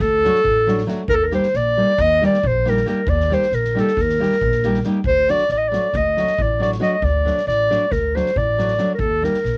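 A snug home cassette recording in a small booth carries this restless, fiery Balkan wedding-band excerpt in 9/8, where a mellow, smooth-topped clarinet sings a classical-style solo up front with tape coloring, a dark, fingerpicked nylon-string guitar joins at 0.2 s over shifting D and Eb chords, a woody, thumpy pizzicato upright bass on gut strings anchors the low end, and a soft-mallet drum kit adds a fat snare and boomy kick in a big-room sound.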